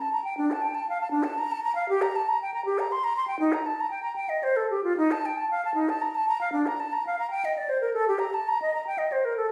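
A mellow silver concert flute opens alone, its airy, metallic tone carried on a soft attack and a gentle vibrato. This is a brief cut from a longer baroque-style fantasia for unaccompanied flute, grave and solemn in mood, moving in a compound 12/8 metre with a free, rubato feel. The solo line spans D4 to C6 and is played expressively, sitting up front for the full 9.5 seconds. A wet, large studio reverb with a 0.7-second tail surrounds the instrument. The sound was captured on a phone in the room and compressed.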